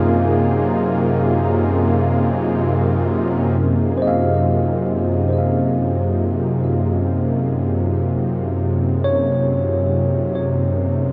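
A warbling, detuned analog pad anchors this serene ambient excerpt in free time, holding sustained chords on Gb major seventh in Gb lydian, up front with chorus and a slow attack. Beneath it, a barely audible analog drone with pulse-width modulation hums until 3.7 seconds. A clean tine electric piano sits in the background, playing arpeggios between F4 and F5, its delayed notes heard as if through built-in speakers. The pad spans Gb2 to Ab4 with a smooth, vintage sawtooth tone, lending the music a weightless feel. A moderate plate reverb with a 3.6-second decay soaks the mix in a dreamy haze.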